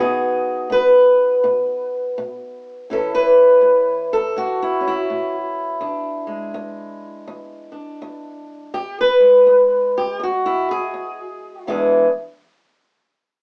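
Heard from further back in a small, wet room with a short 0.5-second ambience and a small-speaker sound, this excerpt of acoustic country blues has a rollicking, swaggering mood at 82 BPM in 4/4, with a swung eighth-note feel in E mixolydian, tuned to A4 = 442 Hz. A single fingerpicked, ladder-braced acoustic guitar sits up front, its old strings giving a woody, boxy tone as it ranges from E2 to B4. It moves from B at the start to A at 2.9 seconds and E7 at 5.8 seconds, and plays until 12.1 seconds, shortly after a new section begins.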